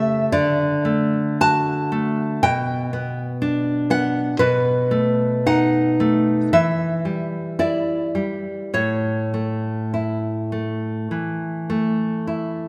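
A fingerpicked nylon-string guitar, full-bodied and up front with a deep classical tone and audible finger squeak, carries this tender romantic solo from A2 to A5. In a rubato 4/4 around 50-63 BPM, tuned to A4 = 441 Hz, it moves through D, Bm, B7, Em and A in a brief passage cut from a longer work. A wet concert hall reverb with a 2.3 s decay surrounds the instrument with a spacious glow.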